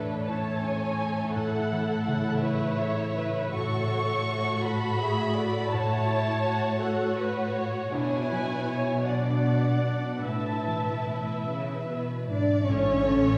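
A tender, moving orchestral film cue in A major opens at once with strings and harp together, unfolding slowly and freely in a rubato 6/8 at around 49-57 BPM. A dark, woody violin section carries the melody with vibrato, while a second violin section, rich, expressive and up front, traces a second line beneath it. A distant, even viola section fills in the accompaniment, a warm cello section anchors the bass with a smooth bowed tone, and a bright concert harp rings out fingerpicked arpeggios across the whole texture. The harmony drifts from A through F#m/A and Bmadd9 to Asus2 before settling back on A. Near the close, a very quiet, punchy French horn section adds sustained chords at 12.3 seconds, and a focused, lush double bass section joins at 12.7 seconds. The whole ensemble sits back in a spacious scoring-stage reverb, and the passage is cut from a longer piece.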